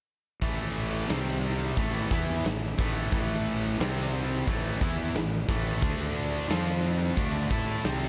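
At 0.4 s the full band crashes in together, a cranked stack guitar with slapback echo and a second, up-front distorted guitar driving an anthemic hard rock riff over A5, C5, D5 and F5 power chords. A growly, fuzz-soaked fingered bass and a huge arena drum kit with a punchy kick, medium-tuned snare and bright crash cymbals push the powerful, straight 4/4 groove. A lush hall reverb gives the kit its pumping room sound and the whole a big arena scale, before this cut from a longer piece ends at 8.1 s.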